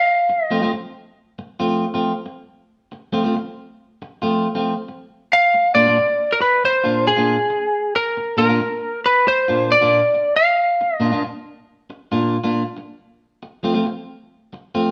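A twangy, slightly broken-up and compressed lead guitar carries the melody in this gritty, soulful blues fragment at a swung 91 BPM in F major, sounding briefly at the start and returning from 5.3 to 11.2 seconds over a clean, picked electric guitar riff that runs from 0.3 seconds to the end, with the band heard live in one room under a moderate stone-room reverb.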